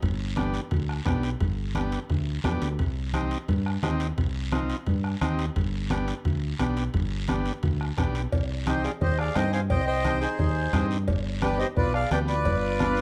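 Passionate and fiery, this cumbia excerpt at 174 BPM in C harmonic minor rides a round, up-front fingered electric bass, a soft-beater bombo, low-tuned ringing congas, a raspy guiro and metallic timbales and cowbell under a buzzy vintage combo organ entering at 0.4 seconds, before a reedy accordion melody and a clear, scooped flugelhorn second line join at 8.7 seconds over G, C minor and G7 chords in a dark, lightly reverberant mix.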